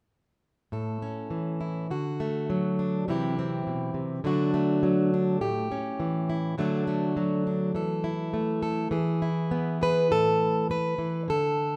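A fingerpicked, plugged-in steel-string acoustic guitar carries this short folk piece alone, sitting up front with a warm, concert-ready tone. Cut from a longer performance, it moves at 102 BPM in a straight 4/4, and its mood feels hopeful. The guitar plays from 0.7 to 11.8 seconds across a range from A2 to B4, moving through A, D, C, D, A7, D, Esus4 and E before a new section at 10.1 seconds settles on A5. A moderate recital-hall reverb gives the instrument a gentle sense of space. The tuning sits at A4 = 439 Hz.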